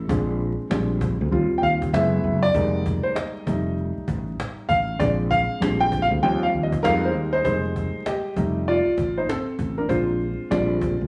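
A smooth, vintage-toned grand piano takes the lead up front throughout this mellow, cool jazz-hop excerpt in F dorian at 98 BPM with a swung 16th feel, moving through rich chords like Bb9, Bb13, Eb69 and Fm11 over a bright, growly fretless electric bass and a woody cajon played with soft hands and faint snares, all set in a moderate stone-room reverb with a live-band feel and a layer of vinyl crackle.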